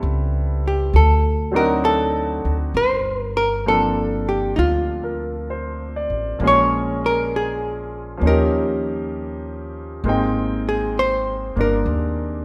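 A dark, clean hollow-body electric guitar carries the picked melody from 0.7 seconds, sitting up front in this romantic, late-night jazz ballad at 66 BPM with a gentle swung feel, tuned to A4 = 443 Hz. Beneath it, a clear, open concert grand piano with a deep low end comps, while a woody, thumpy pizzicato upright bass on gut strings moves through changes from Am7 and D7b9 to Gm11, Bbm7, Eb9 and a closing Abmaj9. A moderate scoring-stage reverb gives the trio a sense of space in this short passage cut from a longer piece.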